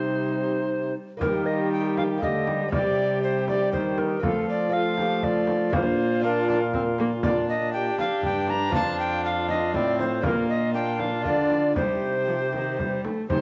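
Rustic and solemn, this excerpt of a Renaissance-style consort dance in triple time sets an airy alto recorder melody in the background against an up-front, expressive tenor recorder second line with a crisp, chiffy attack and vibrato, while a reedy gut-string viola and a very quiet, delicate fingerpicked lute with doubled strings accompany over a bright trombone bass, a vintage, band-limited frame drum joins at 1.2 seconds, and the consort rings in a wet stone-room reverb with a dark, warm production.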